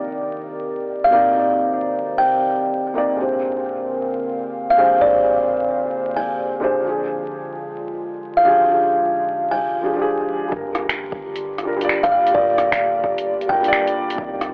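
A woody, buzzing kalimba carries the melody from 1.0 seconds, its hollow thumb-plucked notes ringing up front through an analog delay in this wistful, nocturnal future garage fragment with a swung sixteenth-note feel. Beneath it, a felt-muted upright piano plays soft, intimate accompaniment with audible action noise, roughened by 12-bit sampler grit, tape echo and sidechain pumping, while a warbling, nostalgic pad holds dark, lo-fi chords with chorus and its own reverb over a Cm9, Bb13 and Fm69 progression. At 10.5 seconds the harmony moves to Gm7 as the beat arrives: a deep, layered electronic kick and an up-front deep house kit of finger snaps, hi-hat and rim click, both tape-warm, gritty and re-recorded in a small room. A round, mellow dub sub bass with tube saturation and pumping sits in the background alongside a very quiet sub drop. The whole recording has a dry, hardware-gritty character with light reverb, transformer saturation, vinyl crackle and a telephone-like tone.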